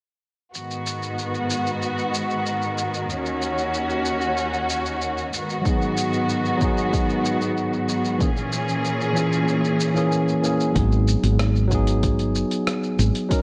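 Sunset chillout in G# minor at 94 BPM, this warm, smooth excerpt opens at 0.5 seconds with a lush, bowed symphonic string section holding vibrato-rich chords over G#m7, D#m7 and A#m7b5, while a dusty, gritty sampler-style kit of hi-hat, rim click and shaker sits low beneath. At 5.6 seconds a bright, bell-like tine electric piano with tape echo joins alongside a deep, overdriven electronic kick, which briefly drops out before a dark, growly fretless bass enters up front at 10.8 seconds on G#m7. Light reverb and a worn, warbly cassette-tape pitch drift give the whole passage a hazy sheen.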